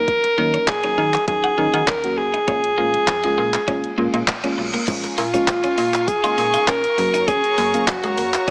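Dance-pop with a confident, energetic drive, led by an up-front, breathy alto saxophone melody over a deep, mellow chord stab with sidechain pumping, a bright, twangy twelve-string electric guitar riff and a snappy, metallic FM bass, all moving through Ebm7 and Bbm7 before landing on Gb at 7.0 seconds. A smooth R&B drum kit with a soft kick, handclaps, hi-hat and shaker enters at 0.1 seconds, and a reverse cymbal at 4.0 seconds leads into a lush studio string section that joins in the background at 4.9 seconds. The mix has light reverb and digital ambience with a small-speaker character, and the excerpt is cut from a longer piece.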